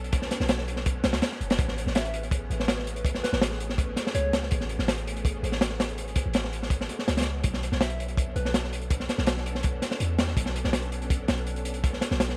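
A crunchy, gritty breakbeat kit drives this raw, atmospheric drum and bass and jungle cut at 164 BPM in B dorian, its saturated snare, tight kick and hi-hat sitting up front with dub echo, over a deep, boomy 808-style bass moving between Bm9 and Amaj9. In the background, a silky vintage string machine holds mellow sustained chords through phaser and ensemble chorus, while a round, keys-like FM lead with chorus and dub echo offers brief phrases from 2.0 to 4.4 seconds and again at 7.8 seconds. The echo-heavy mix carries light studio reverb and a layer of vinyl crackle across this short fragment of a longer piece.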